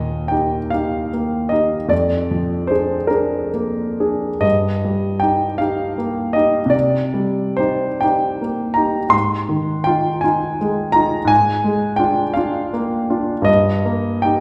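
Heard through a wet recital-hall reverb, this 14.4-second excerpt from a longer piece is a tender, serene romantic nocturne in Eb major for solo concert grand piano, its intimate, natural tone carrying deep bass and audible action noise as it moves in a rubato 6/8 at roughly 43-58 BPM (dotted quarters) through Eb, Bb7/F, Cm7 and Fm7/Ab before arriving back on Eb/G.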